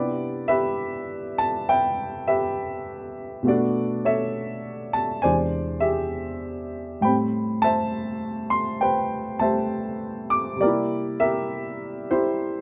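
A dark, mellow baby grand piano, played solo and up front, opens this playful, swinging jazz fragment from a longer piece at 67 BPM in C major, ranging from E2 to D6 through lush chords moving from Cmaj9 to Bm9, E7alt and Am9 before a C7 at 10.6 seconds, all captured with close, detailed microphones and a light touch of reverb.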